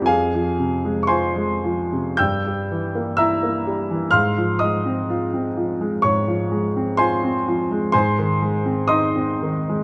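Rubato 4/4 at a slow 51-65 BPM, this yearning, mournful romantic nocturne in F minor, a fragment cut from a longer piece, gives its solo grand piano a worn, vintage tone, smooth and up front as it spans F2 to G6 over Fm, Edim/G and Fm/Ab before settling on Ab near 7.9 seconds, all tuned to A4 = 441 Hz and set in a moderate recital hall reverb of 1.7 seconds captured by close, detailed microphones.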